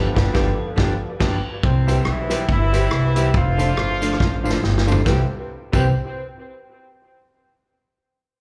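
Opening on a band accent, this cheerful ska excerpt at 140 BPM in C major swings along with a punchy, tightly octave-doubled horn section carrying the melody through tape and slapback echo, a thumpy gut-string upright bass up front, a dark hollow-body jazz guitar providing accompaniment and a jangly, detuned honky-tonk piano adding stabs in the background, a vintage drum kit with dark cymbals entering at 0.2 seconds and playing a fill from 4.2 seconds, and a jingly tambourine joining at 1.9 seconds, the whole band heard through a club PA with reverb.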